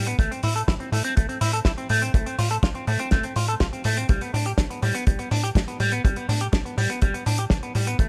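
Melodramatic and danceable, this short italo disco excerpt sets a bright, twangy electric guitar with an envelope filter and digital delay playing up-front arpeggios over a punchy, saturated sequencer bass with a plucky filter and moving notch, a dry, damped 70s drum kit with a fat snare and hi-hat, and a tight, rolled-off kick drum in small room ambience, moving through Am, F/A and G/A.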